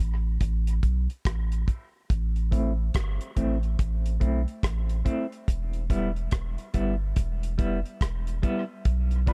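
A deep, round sub bass sits up front in this spacious dub reggae excerpt, its sine-like tone holding sustained notes with a fast attack from the start. The damped 70s drum kit joins at 0.4 seconds, dry and acoustic with a tight kick, hi-hat and rim click, and a rolled-off top that keeps it close and present. Behind them, a clean, fingered semi-hollow electric guitar plays dark accompaniment through tremolo, high- and low-pass filtering and dub echo. A break runs from the start until 8.9 seconds, with a filter sweep spanning the whole passage, set at a relaxed 71 BPM in A minor with a swung sixteenth-note feel, moving from Am to Em at 5.5 seconds. A clear, woody, slightly detuned upright piano stab lands at 9.3 seconds. The production is dark and warm with little reverb, giving the groove a deep, spacious mood.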